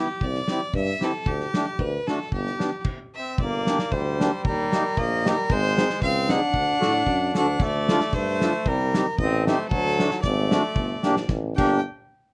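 Heard in a modest small room, this bouncy, festive alpine folk dance band cut in 2/4 at 114 BPM sets a clear, earthy bowed fiddle melody up front over close-miked, reedy accordion, a present tuba bass and a muffled, lo-fi drum kit with dark cymbals, then after a stop at 2.9 s turns from G major to G minor as a soft-attacked trumpet with vibrato adds a second line from 3.2 s, ending on a drum fill at 11.3 s.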